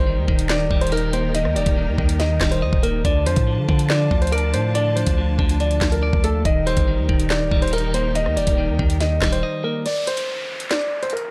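A dark concert grand piano with digital delay carries a mellow melody from the start over picked, compressed clean electric guitar, distant bowed strings with lush vibrato and a deep, sine-toned 808 bass, before an up-front drill kit of knocking kick, sharp snare, rim clicks, handclaps and metallic hats arrives at 0.3 seconds to drive this tense, half-time hip hop fragment at 141 BPM through Eb and Dm chords, until a break from 9.4 seconds thins the texture and, at 9.9 seconds, leaves an electronic downlifter sweeping under the lingering piano and drums in light reverb.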